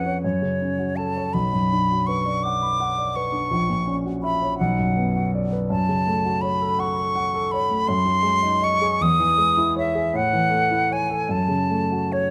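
A romantic classical duo for silver concert flute and grand piano, this short excerpt moves at a slow 55 BPM in 6/8 with uneven beats, pliant rubato and a yearning, melancholic mood, its harmony centred on F# minor and tuned slightly high at A4 = 441 Hz. The airy, metallic flute carries the melody with soft attacks and vibrato, sitting up front above the polished, present piano accompaniment, which spans from deep bass to the upper middle register. Both instruments play throughout the 12.3 seconds, captured with close, detailed microphones in a recital hall whose moderate reverb adds a gentle halo.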